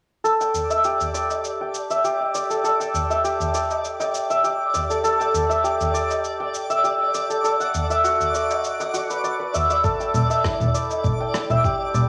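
Cut from a longer piece and captured on cassette in a small room with a wet studio reverb, this hypnotic organic downtempo passage at 100 BPM in straight 4/4 sets a shimmering, up-front hammered santur playing arpeggios through a low-pass filter and tape echo over gritty, compressed sampler-style electronic shaker, congas and rim click, a saturated high-tuned tabla and a bright, twinkling granular texture held on D5 in the background, as the harmony moves from A7sus4 to Bm7 at 7.4 seconds and back at 9.8 seconds, where a thumpy electronic kick drum joins.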